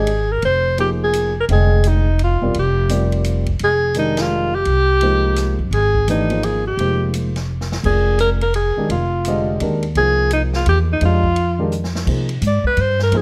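A breathy alto saxophone, a dark baby grand piano and a woody upright bass open this modal jazz fragment together on an Fm9 chord, with a swinging big-band drum kit joining at 0.1 seconds. The mood is spiritual and searching, moving at a brisk 170 BPM in 3/4 with a swung eighth-note feel in F dorian. Up front, the saxophone carries the melody with vibrato, subtone and scooped notes, its tone smooth on top and set in plate reverb. The mellow, intimate piano accompanies with long sustain and audible action noise, while the thumpy pizzicato bass on gut strings sits forward, and the drums add a punchy kick and medium-tuned snare from a natural studio room. The band hits an accent at 4.1 seconds, drum fills arrive at 7.5 and near the close of the first section, and from 12.1 seconds the saxophone moves into a solo as a new section begins. The close, detailed recording carries light reverb.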